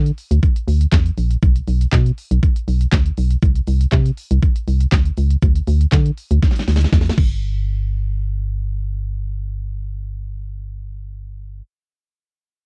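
A straight groove drives this upbeat, summery dance-pop excerpt, with an electronic, layered kit of knocking kick, fat snare, crisp hats, handclaps, shaker and crash sitting up front under a cassette-tape grit, and a drum fill closing the drop before the kit stops at 7.3 seconds. Alongside it, a hollow, organ-like FM bass with a fast attack and dark decaying tone pumps through sidechain compression, then carries on alone until 11.6 seconds. The home cassette recording is dry, with little reverb around the parts.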